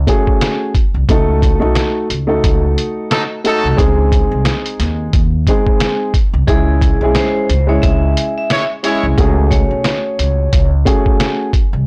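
A blown-out, overdriven recording with light reverb carries this moody, tough, swung boom-bap hip-hop excerpt, where a muffled, pitched-down sampler-style drum kit with a thumpy kick sits up front beside a woody pizzicato upright bass with tube saturation and a dark, boxy upright piano treated with cassette tape and plate reverb, while a clear jazz-style trumpet section punches short stabs at 3.1 and 8.5 seconds and a bright, ringing vibraphone struck with hard mallets carries the melody from 6.5 seconds.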